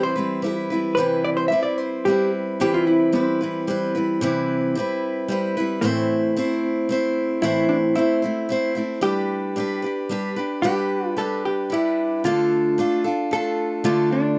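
A 3/4 metre with a straight feel carries this wistful, reflective acoustic folk passage, cut from a longer piece. A picked steel-string acoustic guitar sits up front with a warm, concert-style tone, providing the accompaniment through Cmaj7, Am, G and Dm. A vintage hollow-body electric guitar adds a dark, clean, compressed second line and takes a brief solo in the opening 2.6 seconds, all captured by close, detailed microphones with light reverb.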